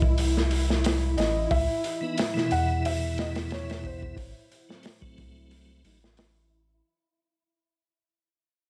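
Trip hop at 90 BPM with a gentle swing, hypnotic and melancholic, cut from a longer piece and fading out across its length: a felt-muted upright piano plays a soft, intimate melody through cassette tape and tape echo over mellow string-machine cellos with ensemble chorus, a deep, round dub sub bass and a crunchy, gritty breakbeat kit up front, while a breathy, wind-like noise texture sits very quietly beneath and a piping, lightly overdriven tonewheel organ with key click and chorus vibrato enters at 2.0 seconds, all in a dry, lo-fi cassette home recording moving through rootless G#(b9), C#m9 and G#7b9 chords.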